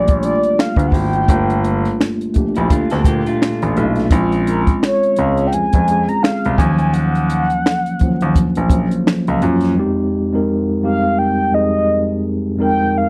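A swung sixteenth-note groove at 85 BPM in 4/4 sets a soulful, late-night R&B and neo-soul mood in this short excerpt from a longer piece. A compact cocktail drum kit sits up front with finger snaps, hi-hat, a punchy kick and a high-tuned snare, its sound dark and smooth, while a clear grand piano carries the bass line with audible action noise and long sustain; both stop at 9.7 s. A mellow tine electric piano, clean through its built-in speakers, holds the accompaniment throughout, moving from Gm9 through Bbm9 and Ebm9 before landing on Fm9 as the music settles into F minor at 9.8 s. Above it, a horn-like synth lead sings the melody with a round, soft-attacked, sustained tone colored by vibrato, a filter sweep, chorus and slapback echo. Briefly, from 2.6 s, a slightly broken-up, lo-fi electric guitar through a small old amp adds a fingered second line with its own slapback echo. The whole has a dry, close 1970s-style studio sound with light reverb.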